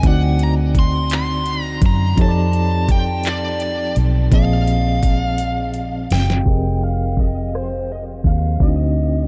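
An overdriven, picked lead guitar carries the sultry, yearning melody high over this slow six-eight R&B excerpt with a smooth, warm tone. Beneath it, a clean tine electric piano shimmers through a combo amp with medium tremolo, while a dark, foam-muted fingered bass sits round and amped in the low end. An up-front electronic drum kit of knocking kick, deep snare, metallic hats, rim clicks and handclaps plays a fill from 5.4 to 6.5 seconds into the second section, all softened by light reverb and a low-pass filter.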